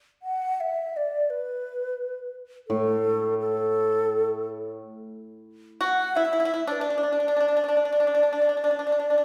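Chinese traditional chamber music, graceful and festive in a loose rubato, where a hollow, airy low xiao carries the melody with vibrato from 0.2 seconds, a shimmering hammered dulcimer rings briefly beneath it from 2.7 to 4.8 seconds, and a dry, percussive fingerpicked pipa adds a second line from 5.8 seconds, all set back in a wet recital-hall reverb in this short cut from a longer piece.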